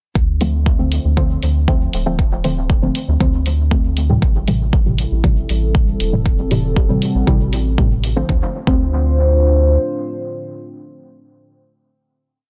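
A nasal, detuned chord stab sits up front in this hazy, nocturnal dub techno piece, playing dotted-rhythm chords with one shape moved in parallel, coloured by chorus, phaser, sidechain pumping and a dub echo. Underneath, a soft, round sub bass carries a dub-style line that also pumps with the sidechain, while a deep four-on-the-floor electronic kick and dark programmed hi-hats drive a straight 118 BPM groove in 4/4. The harmony in D minor moves from Dm7 to Am7. A moody sawtooth pad with a sub octave swells in on a slow attack at 5.0 seconds, adding chorus, phaser and its own sidechain pumping. The hi-hats drop out just before the music settles on a final Dm7 at 8.3 seconds, and the kick falls away soon after as the stab and pad ring on under light reverb. The master is dense and heavily limited.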